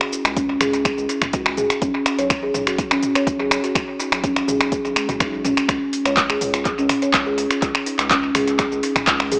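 Soaked in an echo-chamber reverb with a small-speaker sound, this spiritual, earthy afro house excerpt at 124 BPM sets woody, hollow kalimba arpeggios with dub echo and sidechain pumping over an up-front, overdriven deep house kit of finger snaps, handclaps, metallic hi-hats, shaker and toms fed through analog delay, a deep overdriven electronic kick, and a round, dark analog bass that pumps with the sidechain in the background.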